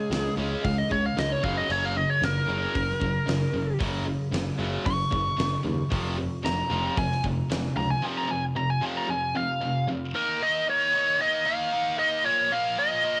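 This hard rock fragment, cut from a longer piece, carries the hiss and grain of a home cassette recording, with a roomy studio ambience around the band. The mood is driving and heavy, in a straight four-beat feel. A biting lead guitar sits up front, its overdriven, picked tone taking a soaring solo that carries the melody high above the band. Beneath it, a high-gain distorted guitar and a bright overdriven electric guitar play the riff, with a punchy, direct picked bass anchoring the low end. A huge arena drum kit in a big room drives the groove with a fat snare, punchy kick, hi-hat and crash cymbal until it drops out at 7.6 seconds, and the bass stops at 7.9. The overdriven guitar falls away at 10.1 seconds, leaving the lead and the distorted riff guitar to carry the closing moments.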